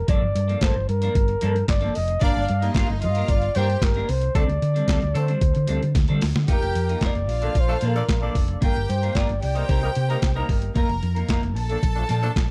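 A straight 4/4 disco groove at 112 BPM in G minor is driven by a gritty, compressed, pitched-down boom bap sampler-style kit with thumpy kick, high-tuned snare, handclaps and hi-hat, up front beside a round, amped hollow-body short-scale bass played with the fingers, while a clean, picked semi-hollow electric guitar with phaser fills in the chords. A breathy, whispered flugelhorn carries the intimate jazz-style melody with scooped notes and a soft attack until 10.5 seconds; a lush, bowed studio violin section with smooth vibrato adds a second line from 2.2 seconds, and a mellow horn section in octave doubling brings pop-style stabs from 4.3 seconds. There a band accent begins, and a drum fill at 5.9 seconds leads into the second half of this danceable, driving excerpt at 6.5 seconds; its dark production holds little reverb and moves through extended chords such as Gm9, Ebmaj7/G, D7sus4 and Bbmaj7.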